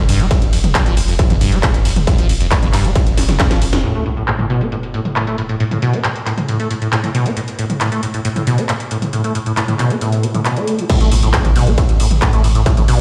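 This driving peak-time techno sounds as if it's blasting from a big sound system in a bare, stone-walled room, with a light reverb hanging over it. The relentless excerpt is built on a squelchy, resonant sawtooth acid bass riff that sits up front for the whole stretch, colored by lush chorus, dub echo and sidechain pumping. A deep, round sine sub bass, overdriven and low-pass filtered, and a distorted, room-heavy electronic kick drive the opening drop alongside a techno kit of cracking snare, metallic hats, handclaps, ride, crash and toms, all filtered. During a drum fill the kick drops out at 3.5 seconds, and after a band accent the sub falls away at 3.8 seconds as a background sub drop and impact land, while a filter sweep works across the drums through the middle section. The kick and another impact return at 10.9 seconds for a second drop, with the sub bass rejoining just after at 11 seconds.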